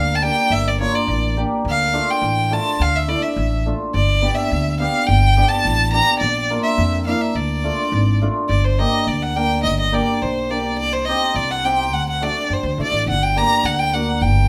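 A straight two-beat pulse in 2/4 carries this festive, bittersweet klezmer piece, cut from a longer performance by a small band playing live together in one room. Up front, a single bowed violin sings the melody with a clear, focused tone touched with vibrato and a slightly boxy character, reaching from C5 up to Bb5. Beside it, the pizzicato upright bass plays the low line with a woody yet bright voice from its steel strings. The hammered cimbalom supplies the accompaniment just behind them, its acoustic tone shimmering and ringing, entering at 0.2 s and stopping at 14.1 s. Moderate studio reverb lends the room a gentle sense of space, and at 8.5 s the music moves into a second section, with chords passing through Gm, Cm and D before returning to Gm.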